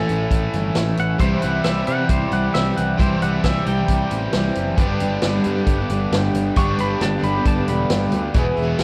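A bright, clean pedal steel guitar solos across this short folk rock and heartland rock excerpt at 134 BPM, carrying a warm, open-road mood over a shimmering, octave-doubled twelve-string acoustic guitar in the background, a double-tracked overdriven electric guitar riff, a dark, round picked bass with tube saturation, and a punchy, up-front vintage drum kit, while a reedy, breathing harmonium joins very quietly at 4.8 seconds and the whole recording carries the warbly pitch drift of worn old cassette tape under light reverb.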